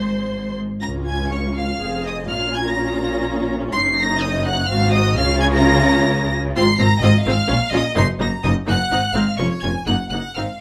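In a 3/4 at 126 BPM with a rubato feel, this spirited, lively classical-period movement for string orchestra in Db major sets a focused, up-front violin melody high in the register over a smooth second violin line, close, rich violas, expressive cellos heard at a distance, and a clear, intense double bass, all bowed with vibrato in light reverb as the harmony moves through Db, Fm, Bbm and Ab7 in this brief cut from a longer piece.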